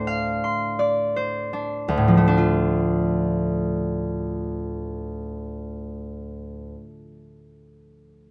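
A solo concert harp, bright, ringing and up front, opens this short, mysterious and wistful classical fragment in D minor at a rubato 43 BPM in 4/4. It eases to a slower pace over a Dm7 chord until 1.9 seconds, then settles onto D minor and rings across its D2 to C6 range until 7.2 seconds, in light reverb with the highest frequencies softened.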